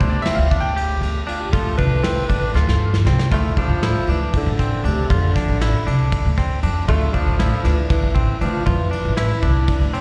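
Progressive instrumental band music in a tense, driving 7/8, where a brilliant, intimate grand piano with audible action noise takes the opening solo before a drum fill at 2.6 seconds, a twangy, clean direct electric guitar arpeggiates through slapback echo and analog delay, a woody, thumpy pizzicato upright bass and a dark brush kit sit up front, a breathy close-miked alto saxophone adds a second line, and a mellow tenor saxophone with scooped notes and subtone carries the melody from 3.3 seconds, all heard through a venue's PA with recital hall reverb.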